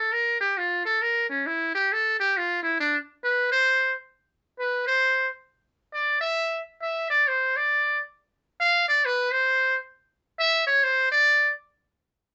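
A metal-muted trumpet carries this short, playful jazz fragment alone, sounding from the start until 11.5 s. Its tone is buzzy and thin with a brilliant edge, and its forceful, punchy delivery carries a touch of vibrato. The swung line moves at 134 BPM in 4/4, in C major, and spans Db4 to F5. The horn sits up front yet sounds roomy, set in a dark production with light reverb that gives the moment a warm glow. The clip is cut from a longer piece.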